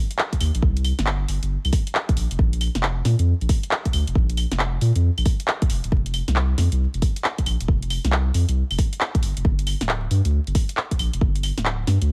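Late-night and moody, this swung two-step UK garage fragment sets a punchy, layered electronic kick and a house kit of claves, handclaps, a punchy snare and bright hi-hats in small-room ambience up front, over a deep, thick, saturated triangle sub bass with a fast attack and sustained notes, all wrapped in a digital haze of vinyl crackle.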